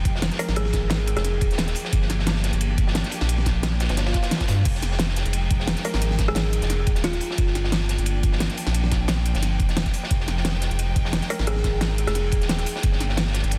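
This excerpt of liquid drum and bass rolls along at 176 BPM in 4/4 with a slight swing on the sixteenths, its soulful mood set in F dorian as the harmony moves between Fm9 and Gm7. Three drum parts stack up from 0.1 seconds: a knocking electronic kick with studio reverb, a produced pop kit with a fat snare, crisp hats and crash cymbal, and a crunchy, saturated breakbeat kit with dark, filtered ride cymbal and a medium-tuned snare, the two electronic layers carrying a tape-warm character. Underneath, a deep sine-and-triangle sub bass with an added octave sits up front, full and sustained, while a lush, biting symphonic string section holds close, vibrato-rich chords that pump against the sidechain. A woody, buzzing kalimba with vintage 12-bit grit and digital delay drops in for brief phrases, first at 0.4 seconds and again around 5.8 and 11.3 seconds. A background electronic swell enters at 4.0 seconds, and the whole mix is dry, dense and heavily limited in a modern style.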